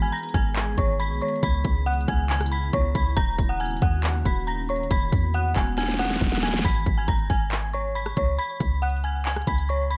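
A half-time trap beat at 138 BPM in G# minor drives this brooding hip hop excerpt, where hard-clipped kicks, sharp snares, crisp hats, handclaps and rim clicks sit up front over a deep, boomy sine 808 bass, while an eerie, inharmonic FM bell carries the melody with chorus, delay and a low-pass filter, and an ethereal, airy detuned pad holds sustained chords until a drum fill at 5.8 seconds leads into a new section at 6.6 seconds, where the pad drops out, all in a dark, dry production.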